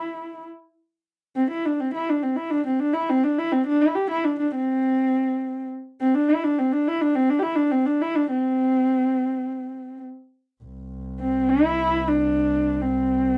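A dry, close 1970s-style studio sound with a short booth ambience frames this proud, galloping Mongolian folk excerpt at 103 BPM in 4/4, where a single dark, woody, husky horsehead fiddle bows the melody up front between C4 and G4 with vibrato and portamento in the C gong mode, until a bowed double bass, rich and floating with a soft sul tasto attack, joins at 10.6 s with a quiet low C drone beneath it through 13.4 s.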